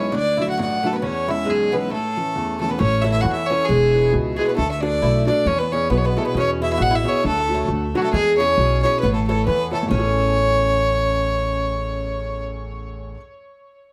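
Rollicking and cheerful, this Celtic polka in A major bounces along at 135 BPM in 2/4 with a swung eighth-note lilt, cut from a longer piece. A clear, earthy fiddle with light vibrato carries the melody up front, bathed in plate reverb and tape echo, while a picked Irish bouzouki with metallic double strings plays a second line and an intimate, polished upright piano, woody with audible action noise and long sustain, supplies the accompaniment. A pizzicato upright bass with steel strings joins at 2.8 s as the tune repeats, and the harmony moves among D, E and A before a contrasting passage arrives near 9.9 s, set in a moderate studio reverb.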